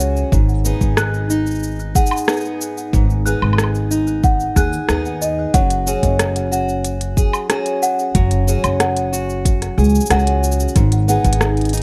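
A light reverb and small-room ambience frame this wistful, delicate folktronica excerpt, moving at 92 BPM in a straight 4/4 as the harmony shifts from G#m to F#sus2 and back. Up front, a boxy parlour steel-string guitar fingerpicks arpeggios with audible finger squeak and a touch of delay, over a woody pizzicato upright bass, while a sweet, bell-like small celesta adds an airy second line through digital delay. Tape-warm electronic drums, re-recorded in a small room, bring smooth hats, cabasa, rim click and woodblock, with a deep kick entering at 0.3 s.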